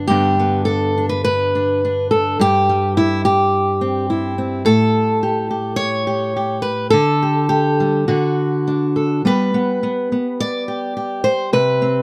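Folk fingerstyle piece for solo steel-string acoustic guitar, hopeful and pastoral, in G major at 105 BPM with a loose, rubato feel. The fingerpicked guitar sits up front with a warm, detailed tone and light reverb, moving from G through C/G, A7 and Dsus4 to D before coming home to G at 9.2 seconds. This short passage is cut from a longer piece.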